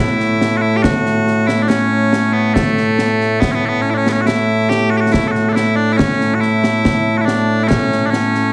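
Scottish traditional pipe music in 3/4 at 70 BPM, this short ceremonial, stirring passage in A major is cut from a longer piece and led by loud, bright bagpipes carrying a continuous, piercing solo melody up front, ranging from A2 to A4. Concert snare drum and concert bass drum join at 0.2 seconds, acoustic with dark cymbals and a small-room character, sitting beneath the pipes. The whole is set in a moderate recital hall reverb with a heavily compressed, radio-like sound.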